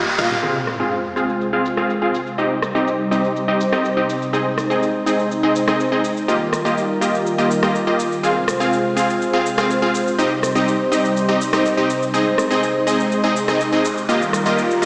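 This short cut from a longer progressive house track sounds as if it's being played on a big sound system in a bare stone room, heard back through a small speaker, with a lush hall reverb spreading over everything. The mood is emotional and bittersweet, moving through a looping Fm, Cm, Ab and Ebadd9 progression. It opens at 0.0 seconds with a band accent: bright, punchy supersaw stabs, detuned and airy with a noise layer and a plucky filtered attack, sitting up front and trailed by digital delay. A drum fill brings in the layered electronic house kit, with tape-warm hats, rim click, shaker and toms, all softened by low-pass filtering and a small room ambience. From 0.4 seconds a smooth, soft-attack sawtooth pad holds sustained chords up front, shimmering with chorus under a long filter sweep, while a background sub drop lands as an impact and a riser returns at 13.4 seconds.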